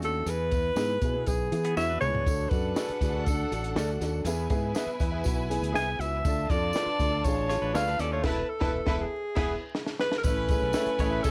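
A straight, danceable 4/4 groove at 120 BPM drives this joyful, uptempo 1960s-style soul excerpt, anchored by a compact cocktail drum kit with a high-tuned snare and punchy kick, a bright fingered electric bass, a woody upright piano, and a jingly tambourine in the background, all under a light reverb and vinyl crackle. Up front, a breathy alto saxophone carries the melody with subtone, scooped notes and light vibrato, while a twangy, compressed clean electric guitar plays a tremolo riff until 2.3 seconds and returns at 7.5 seconds, and a mellow guitar adds spring-reverb stabs. A lush studio violin section enters at 2.2 seconds with a smooth second line, and a distant, tight horn section joins at 8.2 seconds as the band accents and the drums fill over Esus4 to E before the music lands on A.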